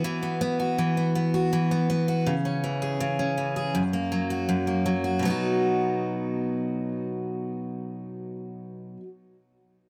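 A bright, full-bodied picked steel-string dreadnought guitar plays alone and up front, its fresh strings ringing across a range from F#2 to G#4, with finger squeak audible under light reverb. This short folktronica cut in B major moves at 81 BPM in a straight 4/4, with a playful, pastoral mood as the chords pass from Esus2 through C#m and F#. It settles on B when a new section begins at 5.2 seconds.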